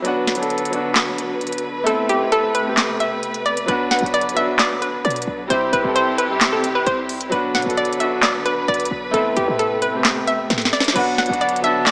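A brooding, hard-hitting trap cut from a longer hip hop piece, moving at 132 BPM in a half-time feel and set in B phrygian around a dark Bm and Amadd9 progression with a turn to C. A clear concert grand piano, softened by a low-pass filter, and a lush bowed string section with gentle vibrato hold the harmony from the start, while the up-front trap kit brings a sharp snare, crisp hi-hats, handclaps and crash cymbal. The opening is a break, with the kick muted from 1.9 seconds, and at 1.9 seconds a hollow, bouncy square-wave pluck enters with the detuned, chorused melody. A short, punchy 808-style bass with a fast attack and decaying tail joins at 3.7 seconds, and a drum fill leads into the final moments, where an airy, reedy concert flute adds a brief second line at 11.0 seconds. The mix sits in a lush hall reverb blended with a small room, and the overall tone has a small-speaker character.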